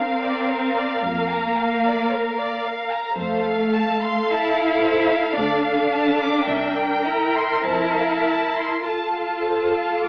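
An up-front, rich cello section carries the bass with vibrato and portamento in this serene, rubato excerpt from a slow romantic movement for string orchestra, which moves through a gentle progression from Bb to F. Above it, two bowed violin sections play a smooth, even melody and a lush, close second line, while a distant viola section fills in the accompaniment and a double bass section enters at 1.0 s. Moderate reverb from a large room surrounds the ensemble, and the recording has an AM-radio character.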